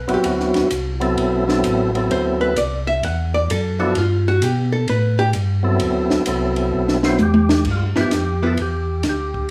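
A swung 4/4 groove carries this bluesy, soulful soul jazz organ trio excerpt, as a dark, clean, compressed hollow-body archtop guitar solos up to 7.7 seconds over a mellow, round tonewheel organ bass and a lightly overdriven, percussive tonewheel organ playing the melody, both organs with key click and a slow rotary speaker, while a dry compact cocktail kit with a punchy kick and high-tuned snare adds a fill from 6.7 seconds, set in a moderate studio reverb.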